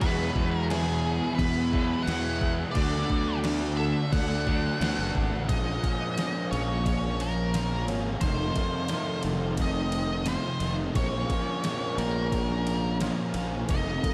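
This shoegaze and dream pop rock piece moves at a straight 88 BPM in 4/4, with a hazy, blissful mood and a dreamy mix soaked in a huge ambient reverb. A gated 80s digital drum machine sets the beat with a thumpy kick, gated reverb snare, crash and ride cymbals, all given a sampler-style, overdriven edge. Below it, a fingered electric bass adds growly, punchy fuzz. Two overdriven semi-hollow guitars play picked riffs in the background, one treated with lush chorus and the other with reverse reverb. A bright, double-tracked distorted guitar adds its own riff until 5.5 s, while a very quiet, twangy clean guitar, recorded direct, picks arpeggios throughout. Over the Eadd9 and D6 chords, then A#m7 and F7, an octave-fuzz lead guitar carries the melody through distortion and delay.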